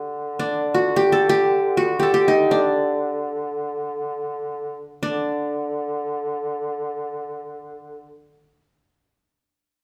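A qanun and a duduk sound together from the opening moment of this short, passionate passage of Turkish makam ensemble music, cut from a longer piece. The qanun carries the melody between D4 and A4, its fingerpicked triple strings giving a bright-edged, acoustic tone placed up front. Beneath it, the duduk holds a drone on D3 in a warm, vintage folk style, its sustained line colored by vibrato and scooped notes. The music moves into a new section at 5.0 seconds, and both instruments play through to 8.2 seconds. The ensemble sounds as though it is playing live in one large studio, with a wet reverb that lends the performance an open, resonant sense of space.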